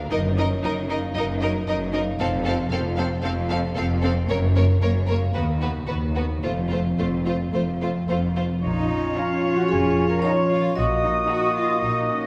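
A close, dry vibraphone with fast motor vibrato joins the melody at 9.2 seconds, along with a pure, silvery flute line, in this playful, whimsical cinematic cue at 113 BPM in Bb minor. It enters over a lush bowed string ensemble: smooth violins carry the tune above a focused second violin line, with background violas, expressive cellos with portamento and dark double basses, all resting on ringing, fingerpicked harp arpeggios. From 8.6 seconds, distant, clear oboe and clarinet lines and a punchy French horn section's sustained chords broaden this magical, sneaky excerpt, all set in a wet scoring-stage reverb.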